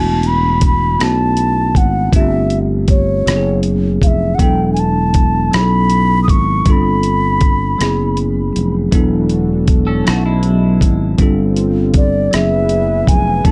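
Yearning and sultry, this slow six-eight R&B groove at 53 BPM in E dorian sets an airy, vibrato-laden alto ocarina melody up front over bell-like tine electric piano, a growly fretless bass and a gritty, compressed sampler-style drum kit with a thumpy kick, hi-hat and rim click, with a brief break at 7.8 seconds before a smooth detuned analog pad enters in the background at 8.9 seconds and a clean, phaser-touched electric guitar adds a short second line near 9.9 seconds, all cycling through suspended ninth chords in a dark, warm production cut from a longer piece.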